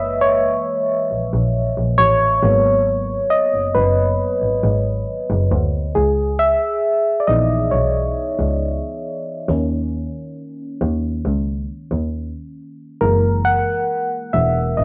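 A mellow FM electric piano carries the lead throughout this late-night, sensual contemporary R&B excerpt, its fast-attack, decaying tones layered with noise and the soft grain of cassette tape. Beneath it, a single bowed double bass sounds clear, smooth and even, touched with vibrato and distant in tone yet placed up front in the mix. Light studio reverb surrounds the home-cassette recording as the harmony moves from F#7 and G#m7 to C#m7 at 6.0 seconds, then through C#sus2 back to F#7.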